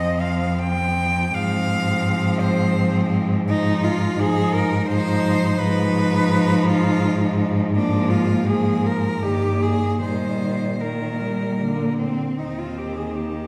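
A single cello carries the melody, played sul tasto with an airy bow, soft attack and light vibrato, giving it an intimate, up-front voice in this serene classical piece for cello ensemble. Beneath it, a second cello sings a focused inner line, a third supplies smooth, even accompaniment, and a fourth anchors the bass with expressive portamento, each bowed by one player with rich vibrato. The flexible rubato pulse moves in a gentle three-beat metre, and the harmony travels from Fm/Ab through Eb/G and Bb before settling on Eb at 12.4 s, where a new section briefly begins. A lush scoring-stage reverb places the ensemble further back in the room, lending the calm mood a glowing, spacious halo. The recording is cut from a longer piece and lasts about 13.5 seconds.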